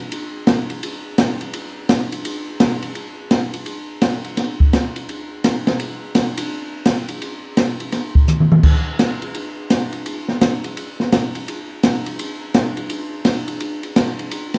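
Jazz drum passage at 169 BPM in 4/4 with a swinging, soulful eighth-note feel, where an open acoustic kit of kick, snare, toms, hi-hat, ride and crash plays alone from 0.1 seconds, its smooth, dusky cymbals, medium-tuned snare and boomy kick sitting up front in a small-room sound with moderate studio reverb and a dark, mellow production, with a brief fill at 8.3 seconds in this fragment cut from a longer piece.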